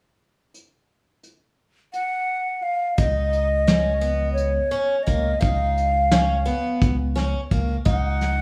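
An airy, hollow metal flute carries the melody from 1.9 seconds, its straight, tongued tone sitting up front in a small register between Db5 and Gb5. This is bright, driving progressive instrumental music in 7/8 at 172 BPM counted in eighths, cut from a longer piece and played with a straight feel. A soft brush kit opens alone at 0.5 seconds with hi-hat, kick and snare; it has a dark, smooth, rolled-off top, a punchy kick and a medium-tuned snare in a small acoustic room. At 3.0 seconds the harmony settles on Cbmaj9/Db as a picked twelve-string acoustic guitar enters with octave-doubled arpeggios between Bb3 and Eb4, shimmering and boxy with fresh strings, a swing lilt and audible finger squeak, though it sits low in the mix. A clean, deep sine sub bass enters alongside it on a sustained, fast-attack Db2, while light studio reverb adds a touch of space.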